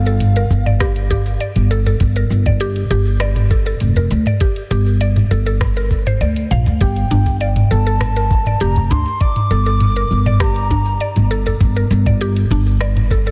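A straight 4/4 pulse at 100 BPM drives this warm, hypnotic organic downtempo piece in G minor, where a gritty, thumpy electronic kick and an electronic afro-pop kit of cabasa, metallic hi-hat, rim click and toms with a softly clipped snare sit beneath a woody pizzicato upright bass that pumps up front, a round, percussive FM mallet-like pluck spinning chorused, tape-echoed arpeggios, a very quiet small udu, and an airy bamboo bansuri with vibrato and tape echo that sounds briefly at the start and returns from 6.8 to 11.3 seconds, the whole of it set in a dry, dense, heavily limited mix.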